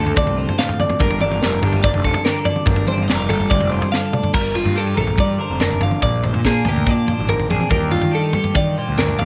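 A crisp, up-front fusion drum kit with a high-tuned snare, punchy kick and a fill at 3.9 seconds drives this restless, intricate math rock and midwest emo piece, as two twangy, compressed twelve-string electric guitars pick clean accompaniment and higher arpeggios over a round, fuzz-overdriven picked electric bass, the chords moving from Dm7 and Gm9 to Bb13 and F13 in an airy studio room with a softened top end.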